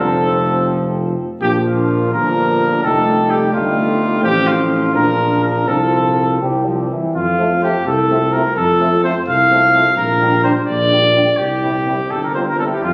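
Classical brass quintet music, warm and noble in mood, moves in a rubato 6/8 at 84 beats per minute counted in dotted quarters, settling into F major by 4.2 s in this short portion of a longer piece. A clear trumpet carries the melody up front, distant and roomy in character, ranging from F4 to F5, while a very quiet flugelhorn with a soft attack and smooth top adds a second line beneath it. In the background, a mellow French horn and a brilliant, vintage-toned trombone fill in the accompaniment, and a tuba with light vibrato anchors the bass up front from F1 to F2. The harmony passes through F, Bb and F9 before a second section begins at 7.2 s, closing on Gm/Bb and C. The ensemble sits in a moderate concert hall reverb, captured on a phone in the room with added studio reverb, and all five parts play through to between 12.7 and 12.9 s.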